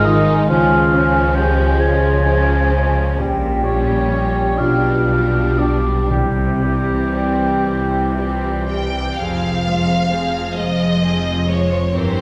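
A tender, lyrical classical passage in F minor opens with nearly the whole chamber orchestra at once, moving in a slow, rubato 6/8 at roughly 38-46 BPM. A rich, focused violin section carries the vibrato-laden melody, while a second, softer violin section plays sul tasto in the background. A mellow oboe and clarinet add distant second lines alongside a hollow-toned flute section. Beneath them, a bassoon, a viola section, a very quiet thumb-plucked concert harp with ringing arpeggios, and a French horn section holding sustained chords fill out the harmony, with bowed double basses up front and a lush cello section anchoring the bass. A very quiet timpani with soft mallets and calf heads sounds a round note at 6.1 s as the harmony passes from Db through diminished and dominant colours toward C. The oboe and horns drop out at 8.6 s, and the remaining winds stop at 9.2 s, leaving the strings and harp to settle on F minor in a brief closing passage. 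The ensemble is heard from further back in a reverberant scoring stage, and the recording is cut from a longer piece.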